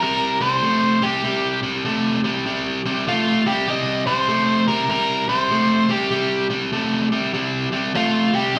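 Blues in a mournful, smoky swing, heard live through a club PA, where two biting, overdriven electric guitars sit up front with slapback echo, one picking a high melody over the other's low riff on a C5 chord for this 8.6-second cut from a longer piece.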